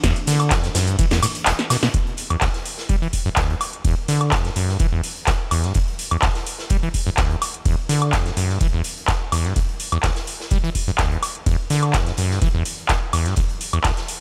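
A squelchy, resonant sawtooth acid bass riff with a filter sweep sits up front in this hypnotic, gritty acid house cut at 126 BPM in E minor. Alongside it, a deep analog electronic kick pairs with an electro drum machine playing punchy snare, metallic hats, handclaps, cabasa, woodblock and ride cymbal, both re-recorded in a small room. A very quiet, detuned pad with chorus holds sustained chords only until 2.0 s, and the kick drops out from 1.5 s to 1.9 s before the main section begins, while a saturated acoustic garage kit of hi-hat and snare sits low in a bright stone room, its hats pumping and its top rolled off.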